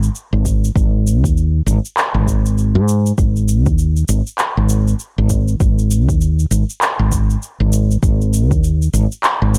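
Organic downtempo at 99 BPM in 4/4, with a 16th-note swing and a meditative, warm mood, this excerpt is carried by an up-front woody fretless electric bass whose round, hollow-body tone comes through direct and amped, pumping under sidechain compression. Layered electronic shaker and handclaps, re-recorded in a small room, run throughout, while a deep electronic kick enters at 0.5 s and drops out at 8.6 s. The sound is dry and gritty, with a shift into a new section at 3.2 s.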